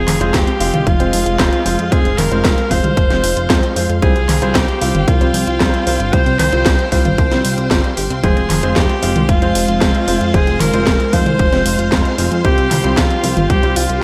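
Italo disco with a melodramatic, danceable pull, this cut from a longer piece sets a bright, forceful alto saxophone melody with vibrato and scooped notes, roughened by vintage 12-bit sampler grit and a digital delay, over lush string machine chords that sit in the background with ensemble chorus. A glossy chorused synth bass with tube saturation and a punchy, overdriven electronic kick anchor the groove, while a house drum kit with a cracking snare, handclaps, hi-hat and toms adds overdrive and gated reverb. Underneath, a very quiet, nasal analog pluck runs arpeggios with chorus and phaser, and a dark, worn grand piano with audible action noise plays background stabs as the harmony moves between F minor and C suspended fourth chords.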